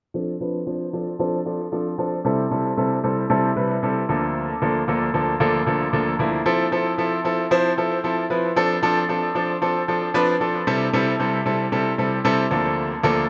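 This is an energetic, confident pop piece cut from a longer work, carried entirely by a bright concert grand piano playing accompaniment from 0.1 to 13.2 seconds. The piano has a brilliant, polished tone with deep bass and a present, up-front placement, and its notes have a short sustain. A low-pass filter shapes the instrument, with a filter sweep running through the opening passage, while dub echo adds repeats to its chords. A wet spring reverb gives the whole recording an echo-heavy atmosphere. The harmony moves through Dm7, Am7/C, Bbmaj7/D and Fmaj7, then returns to the opening chords when a new section begins at 8.6 seconds.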